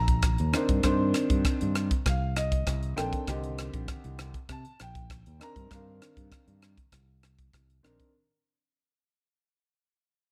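A straight 4/4 groove from a crisp, airy, polished fusion drum kit with a punchy kick, hi-hat and rim click drives this intense, nocturnal electric jazz fusion fragment, as an up-front fingered electric bass, direct and amped, and a warm, boxy grand piano with long sustain play over a Cm9 chord in a studio room with light reverb, fading out across its full 8.1 seconds.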